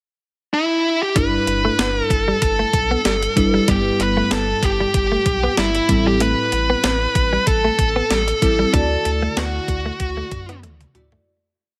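Romantic and uplifting, this short 1980s-style pop piece in G major moves at 95 BPM with a light 16th-note swing, as an up-front, dark, distorted lead guitar opens the pickup bar at 0.5 seconds with bluesy motif-based phrases before glassy, full-bodied digital keys with chorus and a filter sweep push drop-2 chords, a compressed, direct-recorded clean electric guitar picks a muted single-note riff in the background, a thick, saturated sub bass drives eighth notes, and a thumpy, tape-tinged 12-bit drum machine with a big backbeat joins at 1.2 seconds, all under light digital reverb, moving through G6, Em/G, Am7 and Dadd9 until a fade-out from 8.7 seconds and a closing drum fill at 10.6 seconds.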